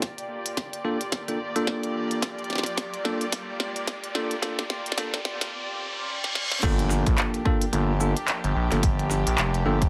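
Over swung sixteenths, a punchy layered kick and a glitchy kit of tiny snare, clicky hats, handclaps, shaker and crash drive this gritty, playful glitch hop build-up, where rich bowed strings hold a Gm7 chord through 12-bit sampler grit and sidechain pumping, bright bell-like tine electric piano stabs sweep through a filter with digital delay, a riser and reverse cymbal climb toward the drop at 6.6 seconds, and there an impact lands as a saturated, aggressive overdriven synth bass enters up front.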